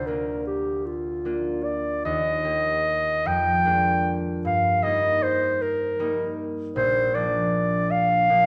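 Classical romantic music for clarinet and harp, this brief, serene passage moves at a slow 51 beats per minute in 6/8, with a flexible, rubato feel in Bb major. The mellow clarinet carries the melody up front, singing between F4 and G5 in a graceful classical style. Beneath it, the concert harp supplies a bright, fingerpicked, ringing accompaniment that reaches down to Bb1 and up to G4, sitting somewhat lower in level than the clarinet. The harmony travels from Bb/D through Eb, Bb7/F and Eb/G before settling on Bb at 6.8 seconds. Both instruments play throughout the 8.5-second excerpt, surrounded by the moderate reverb of a recital hall that gives the sound a gentle, spacious glow.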